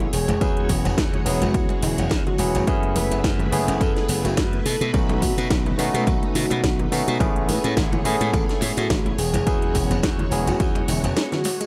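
A digital ambience surrounds this groovy, sensual nu-disco excerpt, where an up-front, glassy slap bass and a punchy, overdriven electronic kick re-recorded in a large room drive a swung 4/4 groove. A house kit with cracking snare and metallic hats plays alongside them, along with background congas and tambourine that have a band-limited, vintage tone. A barky tine electric piano through a combo amp, carrying 12-bit sampler grit, accompanies chords that move from E69 through F#m11, B7 and Amaj7. A lush string machine with ensemble chorus and sidechain pumping sustains in the background, a very quiet detuned unison pluck plays arpeggios, and from 0.1 s a soft, round octave-layered synth lead carries the melody with chorus, vibrato and analog delay.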